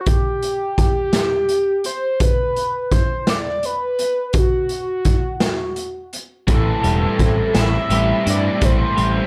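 Bittersweet and cool, this indie rock fragment in 6/8 opens with a screaming, sawtooth-edged synth lead carrying the melody through chorus, phaser, slapback echo and plate reverb over an up-front garage drum kit with a boomy kick and a gritty small-room sound, until at 6.5 s a bright overdriven guitar with ensemble chorus, a twangy twelve-string with warbly pitch drift sitting in the background, and a growling, punchy overdriven bass enter on an Am7 chord, all set in a dark, lightly reverberant production.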